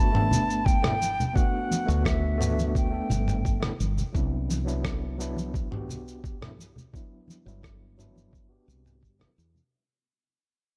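A straight 4/4 groove at 86 BPM anchors this smooth, blissful sunset chillout clip, cut from a longer piece, with a thumpy, gritty electronic kick sitting up front, overdriven and compressed, while a dusty soul sampler-style kit adds cabasa, rim clicks and toms from 0.1 seconds, and congas join at 0.3 seconds. A woody fretless electric bass gives round, hollow-body low notes, underpinning a move from Gmaj9 to Cmaj9#11 at 4.1 seconds. An overdriven tine electric piano plays accompaniment through a combo amp, its fast tremolo, low-pass filter and digital delay shaped by a filter sweep across the whole clip. At the start, a mellow silver concert flute carries an airy, expressive melody with vibrato, a soft attack and delay, stopping at 3.8 seconds. Light reverb and a dark production frame the music as it fades out over its full length.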